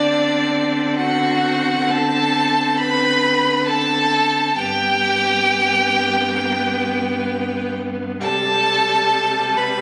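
Classical string quartet in a slow, tender and lyrical romantic movement at 66 BPM in 4/4, played with a rubato feel and heard as a short cut from a longer piece. One violin carries the melody with a rich, vibrato-laden tone, while a second violin sits close and up front with a clear, smooth line above it; a bowed viola supplies accompaniment and a focused cello anchors the bass, all four playing throughout. The quartet sounds as if captured on a phone in the room, bathed in a lush scoring-stage reverb, with the harmony moving from Csus2 over D to G at 4.6 seconds and C5 at 8.2 seconds.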